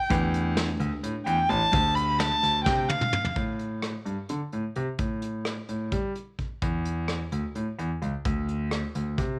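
In a small room, a tense, intricate progressive instrumental in 7/8, cut from a longer piece, opens with a dark, woody bowed violin singing the melody up front with vibrato over the clean, picked chords of a compressed hollow-body electric guitar tucked in the background, moving from Em7 to Dm7, until a drum fill at 2.7 seconds leads both to stop near 3.4 seconds, leaving the clear concert grand piano's deep, smooth bass line and the muffled, lo-fi brush kit with its punchy kick to carry on together.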